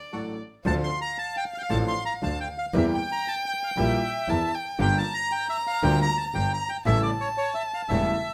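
A sultry, dramatic tango in D minor at 116 BPM with a rubato feel opens on a brief break, with the warm violin's second line sounding first, joined at once by clear grand piano accompaniment and very quiet, dark bandoneon stabs. The bowed double bass enters at 0.6 seconds with a biting, nasal, earthy tone and light vibrato, and at 0.7 seconds a reedy, up-front bandoneon melody takes the lead, set in a boxy small-room sound. The violin adds expressive vibrato and portamento over chords moving from Dm7 through Edim and Gm7 to A7, all captured with close, detailed microphones and light reverb in a passage cut from a longer piece.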